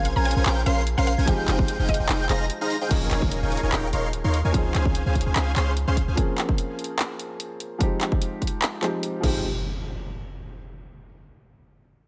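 Sidechain pumping and a light digital ambience shape this short, emotional future bass excerpt, which sits in a dreamy half-time feel with a slight swing. A huge, thick, detuned supersaw riff drives the opening alongside a deep, boomy 808-style bass that sits up front, both dropping out at 6.2 seconds before a brief return near the end. Beneath them, a soft, felt-muted upright piano carries the chords throughout, intimate and mellow through its delay. In the background, an airy, bright lead traces high arpeggios with chorus and vibrato, while a woody, warbling mallet-like pluck adds a short melody coloured by vintage 12-bit grit and tape echo. A layered pop kit of claps, hats, ride and crash runs nearly the whole way, joined at 1.3 seconds by a hard-clipped electronic kick, and background impacts mark the shift into the next section at 2.9 seconds. The harmony moves through lush ninth and major seventh chords before the chords fall away at 9.4 seconds.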